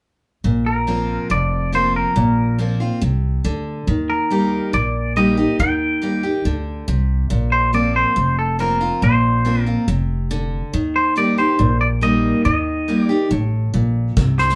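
Picked steel-string acoustic guitar and woody, thumpy pizzicato upright bass open this nostalgic, easygoing honky-tonk and classic country excerpt at 0.4 s, moving between Bbsus2 and Eb chords. A clean, compressed, twangy electric guitar carries the melody between A4 and G5 from 0.7 s, and a soft brush kit with a punchy kick and medium-tuned snare appears only at 14.2 s. The band sounds like it is playing live together in one small room, wrapped in a wet, short reverb.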